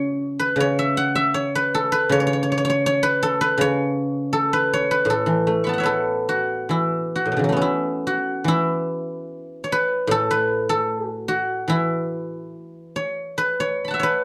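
The rhythm moves in a loose, rubato 2/4, drifting between 67 and 82 BPM in this short excerpt from a longer traditional Chinese piece for solo plucked strings. A lone acoustic guzheng, played with fingerpicks, carries everything from 0.0 to 14.2 seconds, its ringing, silvery tone placed up front and spanning A2 to C#6. The music sits in the A gong mode, tuned slightly high to A4 = 445 Hz, and its mood is elegant and flowing. A second passage takes over at 6.7 seconds. Light reverb and a dark, warm production surround the instrument.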